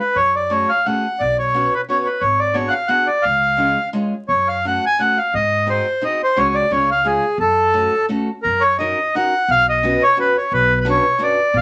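A reedy, up-front accordion with a dry tuning carries the melody in this nostalgic, whirling musette waltz, played with a rubato feel and cut from a longer piece. Beneath it, a boxy, old-stringed ladder-braced acoustic guitar picks the accompaniment and a thumpy pizzicato upright bass holds the low end, all set in a moderate studio room under a layer of vinyl crackle.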